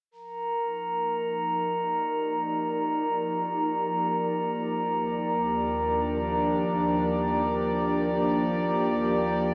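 Floating in free time, this serene ambient passage is a short slice cut from a longer piece in Eb major. A warbly, tape-like pad fades in from the start, holding sustained chords from Eb2 up to D5 with a detuned, nostalgic lo-fi character, softened by chorus and its own built-in reverb. Above it, a glass harmonica adds a pure, ethereal texture between Bb4 and Bb5, its tones beating gently as they ring. Both parts sit up front and play together for the whole stretch, with slow attacks that let the sound bloom rather than strike. The harmony rests on Ebmaj9 before shifting to Bb6/Eb at 4.8 seconds, all bathed in a huge, wet ambient reverb that lingers for 7.7 seconds and leaves a peaceful, suspended mood.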